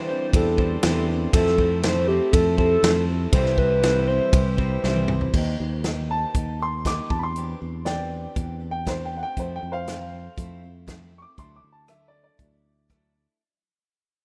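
Jangly and hopeful, this folk rock and heartland rock excerpt opens with a round, soft sine lead carrying the melody through chorus and tape echo, alongside a twangy, slightly broken-up electric guitar riff, a reedy harmonium holding chords in the background, and a bright picked steel-string acoustic guitar. An up-front fingered electric bass and a natural country drum kit with a punchy kick drive a straight 4/4 feel, and a drum fill leads into the second part at 5.3 seconds. There a clear, woody upright piano takes a solo while the rough home-demo mix, set in a small room, fades out until 13.4 seconds.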